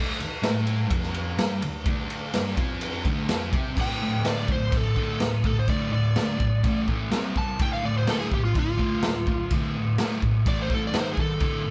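Garage rock with a gritty, menacing mood, this short excerpt from a longer piece drives along at 126 BPM in a straight 4/4 in D minor, tuned slightly flat of standard pitch. A thick, bright fuzz guitar, double-tracked and up front, opens the recording with a picked riff from D2 to C4, and a raw garage drum kit joins at 0.2 seconds with a punchy kick, medium-tuned snare, dark crash and ride cymbals and a saturated, pumping small-room sound with a rolled-off top. At 3.8 seconds an overdriven slide guitar, played with fingerpicks, takes a solo melody between F4 and A5, its tone warm. The harmony moves from D minor into power chords on D, A, C and back, ending on a G# power chord around 10.9 seconds. The group sounds like a band playing live in one room, wrapped in a moderate large-studio reverb.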